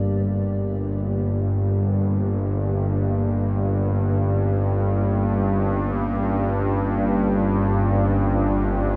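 Cavernous and dark, this free-time dark ambient drone fragment, tuned to A4 = 441 Hz, sets a tense, nasal, bowed-like drone up front with vibrato against a deep, detuned analog pad with chorus sitting in the background, moving from Gm to Bbmadd9 at 3.3 s, while a very quiet bronze singing bowl rings with slow metallic beating, all within a huge ambient reverb on a cassette tape recording.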